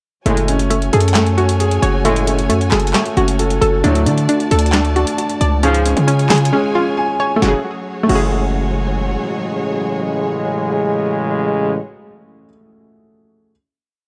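A dark, lightly reverberant small-room mix frames this brooding, eerie half-time trap piece at 134 BPM in F# harmonic minor, where a clear grand piano and a hollow, nasal square pluck with chorus and delay repeat arpeggio loops in eighths over lush bowed strings, bright brass stabs, a punchy sliding 808 bass and a booming drum machine with crisp clap-layered snare and metallic hi-hat rolls, with the drums dropping out at 8.2 seconds as the final F#madd9 chord rings from 7.4 to 11.0 seconds.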